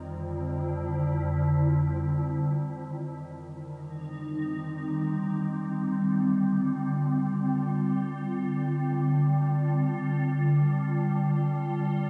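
In free time, this weightless, peaceful ambient excerpt, tuned to A4 = 438 Hz, features a solo evolving wavetable pad that sits bright and up front, its detuned unison triangle tone morphing through ensemble chorus, phaser, delay and its own reverb, with a slow attack and long release sustaining chords that move from F5 to Cm and then settle on Dm7 at 5.7 s, the whole excerpt steeped in a huge, wet ambient space with a 7.7-second reverb tail.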